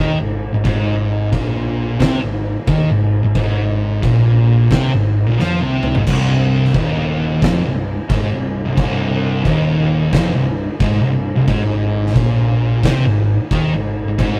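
A thick, double-tracked fuzz guitar sits up front with a dark, distorted riff in C minor, alongside a growly overdriven fingered bass in the background, while an oversized low-tuned drum kit with a fat snare, punchy kick and dark cymbals enters at 0.7 seconds, all moving at a heavy, hypnotic 89 BPM swing in this stoner and doom metal excerpt, captured as a rough rehearsal-room recording with tube saturation and light reverb, with a drum fill at 5.4 seconds leading into a new section at 6.1 seconds.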